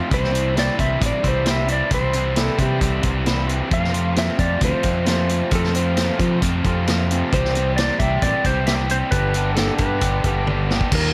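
A straight 4/4 rock beat drives this confident, sunny classic rock passage, cut from a longer piece. The vintage acoustic drum kit sits up front in a studio room, its gritty, saturated sound carrying dark cymbals, a medium-tuned snare, a tight kick and toms, with a fill at 10.5 seconds. A crunchy, double-tracked overdriven guitar picks out the riff over a growling fingered bass that is also driven into overdrive and heard both direct and through an amp. Above them, a clean, dark lap steel carries the melody with slide and volume swells, its tone compressed. The chords move from C to F, back to C, then to G, and the recording has little reverb.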